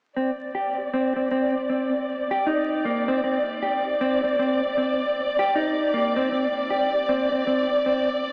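A dark studio string section holds lush, bowed sustained chords up front, its woody, vibrato-laden tone coated in vintage 12-bit sampler grit and softened by a low-pass filter, with a filter sweep running across its whole span. Beside it, a mellow electric guitar plays clean, fingered arpeggios in a low-to-middle register, darkened by its own low-pass filter and trailed by analog delay. This melancholic, hypnotic trip hop fragment, cut from a longer piece, moves with a swung 16th-note feel and rests on a Cmadd9 chord until the chord symbol falls away at 6.3 seconds. The dreamy mix is soaked in a huge ambient reverb with a long tail, framed by vinyl crackle and a small-speaker sound. The guitar stops at 8.1 seconds, and the strings carry on to 8.3 seconds.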